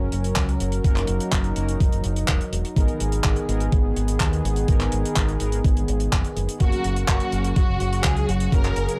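Italo disco at 125 BPM in a straight 4/4, this danceable, nostalgic clip is cut from a longer piece and moves from F# to G#madd9 and back. A smooth, detuned sawtooth pad holds sustained chords with chorus, while a fingered electric bass runs through an envelope filter with transformer saturation for a direct, warm low end. A dry, damped 70s kit supplies handclaps and hi-hat, and a thumpy, sampler-style electronic kick, overdriven and re-recorded in a large room, sits loudest in the mix from 0.4 seconds. Bold, fat synth brass stabs with a fast attack and filter sweep enter at 0.8 seconds, sitting low in the balance. At 6.6 seconds a lush, close-miked studio violin section arrives with the melody, its bowed lines carrying vibrato, portamento and tape echo. The whole has a gritty hardware character and a small room ambience.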